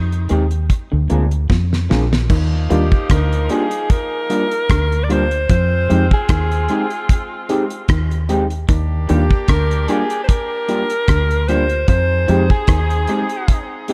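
Lovers rock reggae with a sweet, smooth mood, moving at an unhurried 75 BPM in Eb major with a gentle sixteenth-note swing, this excerpt is cut from a longer piece. A clear alto saxophone carries the melody up front with pop-style vibrato and a tape echo, over a round, dark, foam-muted dub bass that sits prominently in the mix. A damped 70s drum kit with a fat snare, tight kick, rim click, hi-hat and crash cymbal sounds dry and polished under gated reverb, and a drum fill from 1.5 s leads into the second section at 2.3 s, where an edgy, vintage saxophone section joins with a vibrato-laden second line. Beneath, a mellow FM electric piano with fast-decaying notes and a faint noise layer supplies accompaniment. Two twangy, slightly broken-up guitars through a small old amp fill out the texture: one plays a picked low riff in the background, while the other adds very quiet fingered stabs bathed in lush chorus. 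The harmony drifts between Fm9, Bb7 and Ebmaj9, all set in a studio reverb.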